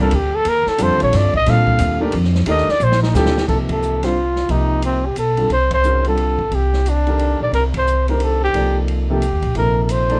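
A breathy, dark trumpet opens with a solo over piano and upright bass, and the drum kit joins at 0.1 seconds in this cool, hypnotic modal jazz in C dorian, swinging in 3/4 at 178 BPM. The trumpet carries the melody up front with a light vibrato, while the concert grand piano accompanies with a smooth, vintage, intimate tone, deep lows and audible action noise. The pizzicato upright bass sits up front with a woody, steel-strung sound, and the acoustic drum kit stays further back in a small, natural room, with dark cymbals, a medium-tuned snare and a boomy kick. A drum fill from 2.8 seconds leads into a new section at 3.5 seconds, where the harmony moves from Eb to Cm69 and the band hits a series of accents, the last arriving just after Eb returns. Light reverb gives the performance a gentle sense of space in this passage cut from a longer piece.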